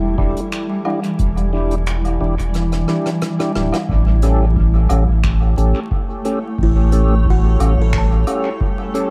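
Vinyl crackle and a heavy wash of echo over a small room ambience frame this hazy, spacious ambient dub excerpt at 89 BPM in 4/4, with a light swing on the sixteenths and a shift from Em7 to A7 at 3.9 seconds. A round, sine-toned sub bass sits up front beneath a cloudy, evolving granular pad and fat, lightly overdriven tonewheel organ stabs turning through a slow rotary speaker with chorus vibrato and dub echo. A tape-warm electronic kick stays in the background and drops out from 2.5 to 3.9 seconds for a drum fill, while a soft brushed kit of finger snaps, hi-hat, rim click and woodblock trails dub echo, and a woody, buzzing kalimba plays echoed arpeggios at the opening and again from 6.6 seconds.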